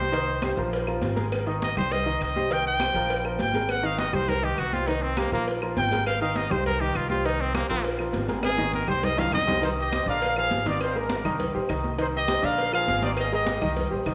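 Bathed in a wet echo-chamber reverb, this driving, fiery salsa excerpt opens with a punchy, vibrato-laden trumpet solo up front, backed by clear, worn-toned grand piano, a growly, thumpy pizzicato upright bass, ringing high-tuned congas, round, distant cowbell and bongos, and very quiet woody claves, until a drum fill leads into a warm trumpet section that takes over the melody at 9.6 seconds.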